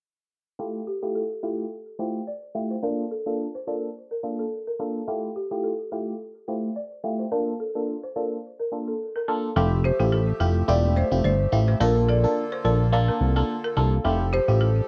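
A low-passed home cassette sound in a moderate studio room frames this breezy, joyful afrobeats cut in F major at 107 BPM with a 16th-note swing, where a biting, phased FM electric piano and a dry, round balafon riff ride a filter sweep over Fmaj9 and Bbmaj7 from 0.6 seconds before a fat, saturated analog bass and a reedy, slowly beating accordion enter at 9.6 seconds and a woody marimba with medium mallets takes the melody at 9.9 seconds.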